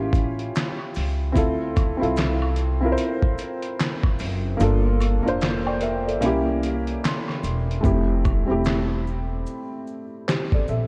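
Soaked in lush hall reverb and cassette haze, this mellow, nostalgic lo-fi hip hop excerpt in F major sways at 74 BPM with a swung 16th feel: a soft, felt-muted upright piano with audible action noise sits up front beside a woody, gut-strung upright bass and a gritty, overdriven sampler-style kit of thumpy kick, fat snare, hi-hat and handclaps, while maracas and woodblock linger in the background; the kick drops out at 4.6 s, the piano plays a fill at 6.6 s, and the hi-hats fall away at 7.8 s as the chords land on Fmaj9.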